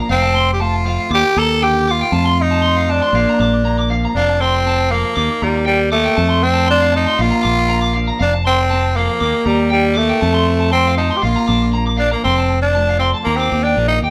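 A raspy, growling tenor saxophone with light vibrato carries the melody up front in this carefree, warm highlife guitar band passage, moving at 118 BPM in a straight 4/4 in F mixolydian over a repeating F, Eb, F, Bb chord cycle. Beneath it, a round, fingered electric bass sits close and direct, a slightly broken-up electric guitar picks high arpeggios, and a clean electric guitar plays picked accompaniment in the background, washed in spring reverb. The band sounds as though it is playing live together in a stone room with moderate reverb, and the recording is cut from a longer piece.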